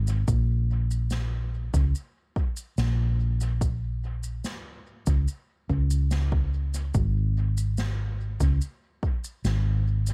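A straight 72 BPM pulse in 4/4 anchors this deep, hazy ambient dub excerpt in Bb minor, where a dark, round hollow-body short-scale electric bass sits up front between Ab1 and Db2, a layered, tape-warm electronic kick thuds close by from 0.3 s, and a fat acoustic snare with shaker drifts far back through heavy dub echo in a dry, echo-soaked mix.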